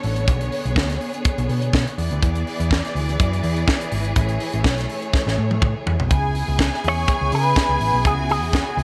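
A small-room sound with light reverb frames this short disco cut at 124 BPM in straight 4/4, driving and danceable over a Bm9, E7, Amaj7 and C#m7 progression. A tight funk drum kit with a high-tuned snare sits up front beside a dark, round hollow-body picked bass, while a clear, distant symphonic string section holds sustained chords behind them, and a drum fill runs from 5.1 to 6.1 seconds. At 6.1 seconds a lush, close violin section adds a second line with slapback echo, and at 6.9 seconds a dark, compressed electric guitar through an envelope filter takes the melody with tremolo.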